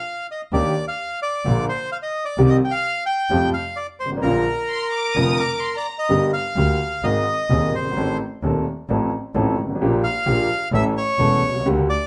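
Sultry and passionate, this fragment of a tango moves at 130 BPM in 4/4 with a rubato feel, starting in Bb major and turning to G minor at 6.1 s. A reedy, close-miked bandoneon carries the melody up front, dry and full, opening alone before a warm concert grand piano and a bowed double bass join at 0.5 s. The piano's accompaniment is open, with deep bass and long sustain, while the single bass player draws a dark, smooth line with vibrato, soft attacks and expressive portamento. At 4.7 s a studio violin section adds a clear, pure second line, bowed sul tasto so it floats high above the band. The players sound live together in one room, with moderate studio reverb and a mellow, rolled-off top end.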